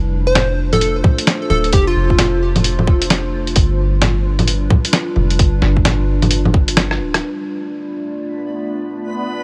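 Rainy and melancholic, this short future garage excerpt drifts over a swung groove, with a warbling, nostalgic pad holding sustained chords under chorus and its own reverb while a deep, round 808-style bass pumps beneath it until 7.2 seconds. A punchy, bright unison lead flashes a catchy phrase only briefly, and a muffled, pitched-down sampler kit of bongos, hi-hat, rim click and snare sits up front beside a tight electronic kick, ending in a short break and drum fill. From 7.9 seconds a reversed, dreamy granular texture rises over the pad's closing Dm chord, the overall mix otherwise dry and close.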